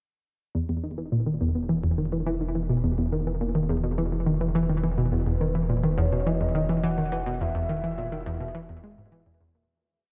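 Steeped in a huge ambient reverb and the muffled haze of cassette tape, this expansive, cosmic piece of sequencer-driven space music rests on an up-front, detuned analog pluck with chorus and delay cycling a 16-step sequence over a deep sine sub bass holding its root, while a dark, octave-layered synth lead with chorus, tremolo, vibrato and delay drifts through a free melody from 5.1 seconds as the piece fades out from 6.6 seconds.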